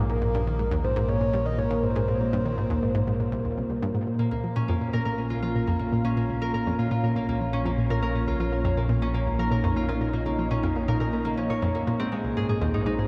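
Expansive and mysterious, this excerpt of sequencer-driven ambient space music moves at 121 BPM in B-flat minor, where a warbling, chorus-laden resonant pad sustains chords over a bright analog pluck riff with tape echo and a fat, saturated analog bass, while a breathy flute-like synth lead with vibrato and 12-bit grit sings a brief melody until 3.6 seconds before an up-front, ringing concert harp takes over with echoing arpeggios from 4.2 seconds, all bathed in a huge ambient reverb.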